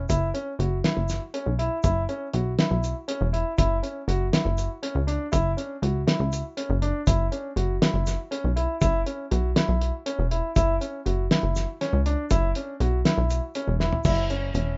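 A rough home demo mix, rolled off above 7.7 kHz with light reverb, carries this brooding, intricate piece of progressive instrumental band music in 7/8 at 241 BPM, cut from a longer piece. A warm grand piano with delay plays arpeggios as a punchy, wave-folded analog bass plucks low underneath, while a muffled, cloth-damped drum kit with a fat snare and dark cymbals sits up front beside a grainy egg shaker in the background. The harmony moves between F#5 and a rootless Dmaj9/F#, landing on F#7(no3) at 14.0 seconds just after a drum fill at 13.8 seconds.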